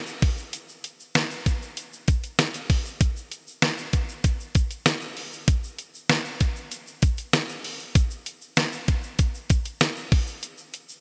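A straight 4/4 pop groove comes from an up-front, clean 12-bit sampler-style drum machine with a thumpy kick, fat snare, hi-hat and tambourine, while a grainy, mellow tube shaker sits compressed and saturated in the background, all set in light digital ambience with a bright 1980s-style production that gives this short cut from a longer piece an uplifting, glossy mood.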